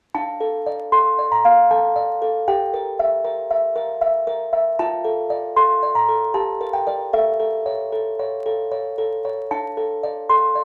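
A vinyl crackle sits under the music, and a moderate club reverb gives the sound a short, gentle bloom. The piece is a fragile, wistful classical lullaby for solo music box in D minor, moving at an unhurried 77 BPM in a straight 3/4 lilt and tuned slightly high to A4 = 442 Hz. The music box is delicate and tinkling, with the plucked, airy voice of a small box, placed up front and spanning D4 to C6. The harmony drifts from D minor through Edim/G, Dm/F and Gmadd9 before arriving on A around 7.1 seconds and settling onto a bare D5 at 9.5 seconds. Lifted from a longer piece, this brief passage plays through to 10.6 seconds.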